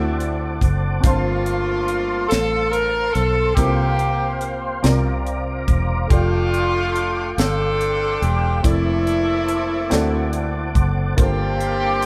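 An edgy, tightly voiced saxophone section carries the melody with vibrato and a tape echo trail, sitting up front in this reverent, hopeful slow gospel excerpt in a straight 6/8. A worn, woody upright piano with a slightly detuned, short-sustained tone fills in the accompaniment while a soft, flute-like tonewheel organ holds sustained chords through a slow rotary speaker and chorus vibrato, its key click audible. Underneath, a round, foam-muted fingered electric bass and a dry, polished funk kit with a high-tuned snare and tight kick, entering at 0.2 s, anchor the live-in-one-room sound in moderate studio reverb over chords moving from D7 and Gm11 to F69.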